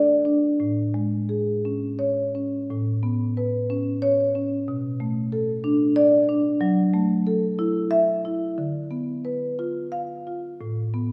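Flowing and playful, this brief contemporary classical excerpt for solo marimba moves in a loose, rubato 6/8, the woody, mid-forward tone of medium mallets on rosewood bars ranging from deep low notes to bright upper ones through chords such as Amaj7, Bm7, F#m7 and a darker Dm6 before settling on Asus2, all set back in a generous scoring-stage reverb that lingers for about 1.7 seconds.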